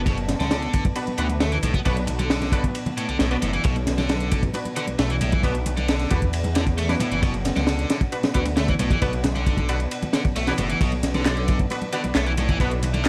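A crunchy, punchy breakbeat kit with a high-tuned snare, dark ride and rolled-off top drives this gritty, raw 134 BPM breakbeat piece in B minor, entering at 0.1 s together with a layered house kit's handclaps and hi-hat, bright background congas, and a biting overdriven guitar riff with 12-bit sampler grit and dub echo, while bold orchestra-hit-like synth stabs with ring modulation and dub echo arrive at 1.0 s, all over a swirling, thick phased saw bass, a deep, moody ambient pad with chorus and sidechain pumping, and a light small-room ambience laced with vinyl crackle.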